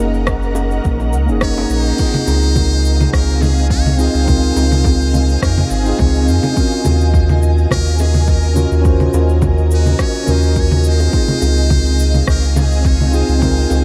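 A relaxed 105 BPM groove in 4/4 with a light 16th-note swing opens this sunset chillout piece in Db major, its electronic kick arriving at 0.3 seconds with a punchy, layered thump alongside a background deep house kit of congas, crash cymbal, rim click and shaker. Very quiet bongos, tight and high-tuned under soft hands, add a faint acoustic patter. Underneath, a deep, round sine sub bass sits up front with a touch of tube saturation, while a mellow, clean tine electric piano carries the accompaniment through a delay. An ethereal, airy pad holds sustained chords with slow attack, ensemble chorus, built-in reverb and tremolo, moving from Dbmaj9 to Ebm7 and back. At 1.4 seconds a brilliant, buzzy trumpet with a metal mute takes the melody, close-miked, thin and forceful with vibrato and its own delay, all set in a dreamy mix soaked in a huge ambient reverb that makes this excerpt feel warm and unhurried.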